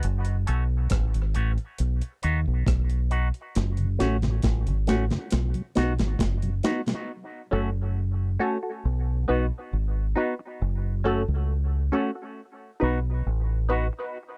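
A dry, close 1970s-style studio sound frames this meditative, spacious dub reggae excerpt at 68 BPM in F# dorian, where a round, dark fingered bass and gritty, overdriven breakbeat drums hold the first 7.1 seconds before the drums stop, a mellow, flute-like tonewheel organ with slow rotary and dub echo sits in the background, a twangy envelope-filtered guitar carries through to the end, and muted, detuned sawtooth chord stabs with phaser return from 7.5 seconds over a steady F#m to B vamp.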